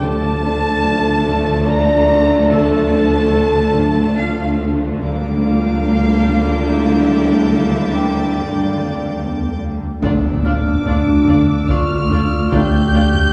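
Cinematic suspense score in D harmonic minor at 72 BPM in 3/4, tense and mysterious, where a distant, lush violin section carries a vibrato-rich melody with portamento over a second violin line, rich violas, a woody cello riff, dark cello and double bass lines, and a vintage-toned French horn section holding sustained chords, all set back in a reverberant scoring-stage space. A metallic, ringing hard-mallet vibraphone adds quiet texture from the start, and a close, expressive high violin texture joins at 5.0 seconds as the harmony moves from Dm to Bb6/D. At 10.0 seconds the chord returns to Dm as a distant taiko ensemble with hard sticks and a faint electronic impact enter, and a mellow, roomy solo clarinet adds a second line at 10.4 seconds in this short cut from a longer piece.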